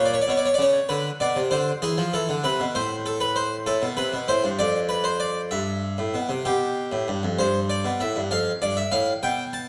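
A Flemish-style harpsichord, played on two sets of strings, sits up front and carries this elegant, lively baroque-style two-part invention entirely on its own, sounding airy, plucked and full across a range from F2 to A5. The piece moves at 65 BPM in a straight 6/8, counted in dotted quarters, and opens in A minor before turning toward C major from 3.7 seconds. The harmony passes through B-flat minor, B minor and E7 before settling on A minor, then moves through D minor, C and G chords. A second section begins at 7.4 seconds and ends on an F chord at 9.7 seconds. The instrument rings out in a reverberant recital hall with a 1.7-second decay, and the passage is cut from a longer piece.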